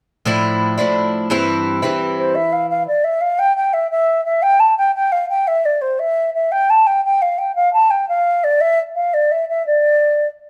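Dark and lively with a wild edge, this short fragment of Celtic folk moves in a straight 6/8 at 115 BPM, counted in dotted quarters, in D minor with the tuning set to A4 = 442 Hz. An Irish bouzouki opens at 0.3 seconds, its picked double strings ringing with a metallic, acoustic shimmer as it outlines Dmadd9 and then C. A wooden flute enters at 2.2 seconds, briefly overlapping the bouzouki before the strings stop at 2.9 seconds, leaving the flute to carry the melody over open, chordless space until 10.3 seconds. The flute's tone is hollow and pure, tongued and straight, sitting up front in the high register. Close, detailed microphones capture both instruments, set in a small room with a moderate touch of reverb.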